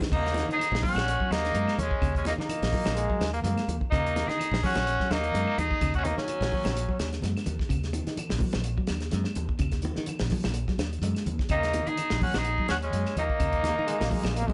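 A lightly swung sixteenth-note groove in four drives this intense, hypnotic afrobeat fragment, built on a dry, up-front 70s drum kit with dark cymbals and a tight kick, a growly, punchy fingered electric bass, high-tuned background congas struck with hard hands, quiet woody claves and a clean picked electric guitar holding arpeggios over a single Ebm7 chord. Up front, a raspy, gritty tenor saxophone carries the melody with vibrato, shadowed by a brilliant trumpet with scooped notes. Sax and trumpet fall away at 7.1 seconds before returning at 11.5, while a present bass trombone adds brief figures around 2.9 and 13.6 seconds. The band plays live in one room with light reverb and a top end that stops around 10.8 kHz, and a drum fill at 14.3 seconds closes the passage.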